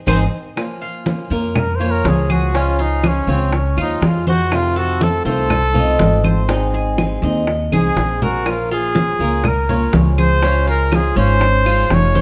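Cuban son and guajira at 122 BPM in Bb minor, danceable and sultry, opens with a band accent before a breathy, whispered trumpet solos up front over a thumpy gut-string upright bass, a boxy fingerpicked ladder-braced guitar, a metallic double-strung tres playing arpeggios, thin-skinned congas, background cowbell and bongos, and saturated claves, all set in a moderate large-studio reverb with drum fills at 0.3 and 7.7 seconds.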